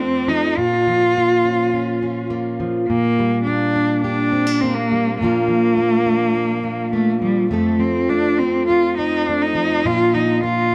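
Hopeful and gentle, this short acoustic folk piece for a small group moves at 103 BPM in a straight 4/4, and it is cut from a longer work. A bowed cello carries the melody between G3 and F4, played by a single player with vibrato and a focused, smooth-topped tone, touched with tape echo and sitting up front. Beneath it, a fingerpicked, plugged-in jumbo steel-string acoustic guitar supplies full-bodied accompaniment spanning F2 to A4, also up front in the mix. Both parts play together from 0.0 to 10.7 seconds, moving through F, B-flat minor, G minor over B-flat, and B-flat before returning to F and closing on B-flat at 9.8 seconds. Close, detailed microphones and a light reverb give the recording an intimate presence.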